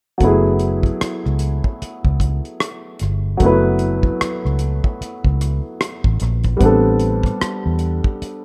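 Opening at 0.2 seconds with a warm baby grand piano voicing an F#m11 chord over a dark, round, foam-muted vintage electric bass and a cloth-damped, thuddy drum kit of tight kick, hi-hat and rim click, this soulful, introspective neo-soul R&B fragment in F# minor sways at 75 BPM with a swung sixteenth feel, shifting to Am11 at 6.6 seconds before the bass stops at 8.2 seconds, all up front in a rough home-demo mix with studio reverb.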